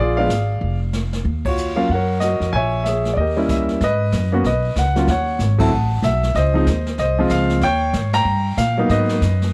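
A warm, up-front concert grand piano carries the melody in this moody, swinging jazz piano trio excerpt, its deep bass tone giving the harmony real weight. A woody, growly pizzicato upright bass sits close alongside it, while a brushed drum kit with dark cymbals and a boomy kick joins at 0.3 s from a small, natural-sounding room, set further back in the mix. Studio reverb surrounds the trio, and the band hits shared accents at 1.4, 5.6 and 8.1 seconds.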